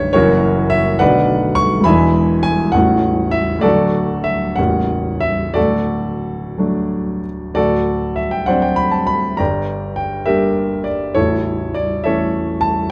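Lyrical and warm, this short passage from a longer romantic character piece for solo piano unfolds in 6/8 with a flexible, rubato feel. The grand piano plays alone for the full 12.9 seconds, spanning A0 up to C#6. Its tone is warm, intimate and natural, placed up front, with the mechanical noise of the action audible beneath the notes. A moderate small-room reverb and a dark, warm production frame the sound. The opening harmony passes through F#7, B minor, E7 and A before arriving at D at 3.6 seconds. A second statement of the opening material begins at 7.6 seconds, turning through D7 and G minor before settling on A.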